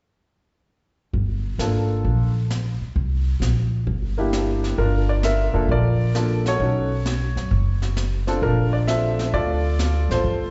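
Heard through a venue's PA in the reverb of a recital hall, this short cut from a longer live set has a muffled, top-trimmed sound with light reverb. It is a swinging, cool jazz piano trio in 4/4, with a lilting swing on the eighth notes. The upright bass and brushed drum kit start at 1.1 seconds. The plucked bass sits up front, dark, woody and thumpy with steel-string weight, while the drums sit farther back, with brushed snare, hi-hat and kick, a high-tuned snare and a boomy kick in a small-room sound. The concert grand piano carries the melody from 1.6 seconds, intimate and close, with audible action noise, deep low end and a slapback echo. The harmony moves from Gm9 to C9, then through Gm7, B7sus2 and Bbmaj7 once a second section begins at 4.8 seconds.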